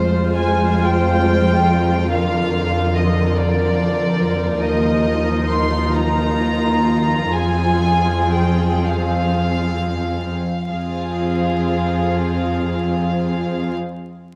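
A dark cello section sits up front, holding a low, intimate bass line under this moving, longing cinematic film score excerpt in a rubato 6/8. Above it, a violin section carries the melody with a pure, floating tone and soft attack, bowed sul tasto and placed close. A second violin section plays a lush, woody second line that sounds more distant, its vibrato richer than the light vibrato of the viola section, whose soft accompaniment feels intimate. All four string sections play throughout, from 0.0 to 13.7 seconds, moving from Fm through Bb/F and Ebsus2 back to Fm as the pulse slows between 3.4 and 10.7 seconds. A moderate scoring-stage reverb and a vinyl crackle surround the ensemble.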